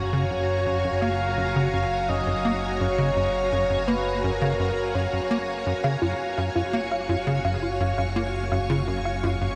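Cosmic and luminous, this ambient, sequencer-driven space music moves at 84 BPM in 4/4 in F# major, with a tight, punchy sawtooth sequencer bass riff driving beneath a lush, bright string machine ensemble holding up-front F#maj7 chords under ensemble chorus and shimmer reverb. A breathy, flute-like synth lead with vibrato, tape echo and shimmer carries the melody until 5.5 s, while an evolving analog drone with pulse-width modulation hums low and a mellow, tempo-synced gated texture pulses in the background. From 5.8 s a warbling, dusty lo-fi pluck adds mellow arpeggios through tape echo, all set in a huge, wet reverb with a 7.8 s decay in this brief cut from a longer piece.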